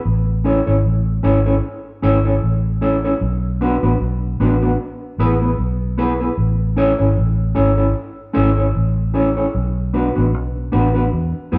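A lightly swung sixteenth-note feel in 4/4 carries this uplifting roots reggae fragment, cut from a longer piece, where a round, foam-muted vintage electric bass sits dark and up front beneath a clean, mellow electric guitar bathed in spring reverb, the pair cycling through A, Bm and E as a band playing live in one room, wrapped in a moderate large-studio ambience.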